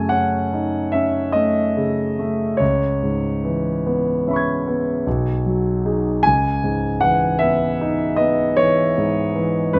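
A concert grand piano carries this short impressionist classical passage alone, its tone warm and open, with deep bass, long sustain and an up-front presence. The mood is wistful and hazy, moving in a slow, rubato 9/8 at around 47-53 beats per minute counted in dotted quarters. The piano spans a broad register, from B1 in the low bass to G#6 high in the treble. The harmony drifts through colourful extended chords, starting on F#m6, shifting to C#m7 at 2.6 seconds, touching B69 at 5.1 seconds and settling on C#m9 at 6.2 seconds. Close, detailed microphones and light reverb frame the instrument, and the recording is a brief fragment cut from a longer piece.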